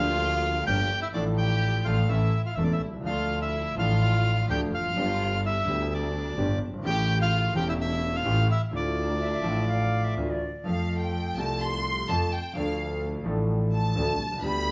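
This tango excerpt unfolds in a flexible, rubato 4/4, its mood melancholic and dramatic. A reedy, bright bandoneon sits up front carrying the melody until 10.1 s. Behind it, a lush studio violin section plays a distant, expressive second line with vibrato and a soft attack. A concert grand piano with deep bass and a natural tone provides accompaniment, while a bowed double bass adds vibrato and portamento from further back. An airy, metal-toned flute slips in a brief second line with vibrato at 9.2 s. The harmony shifts at 10.7 s, where the violins take a solo passage, and the whole band plays live together in one room under moderate large-studio reverb.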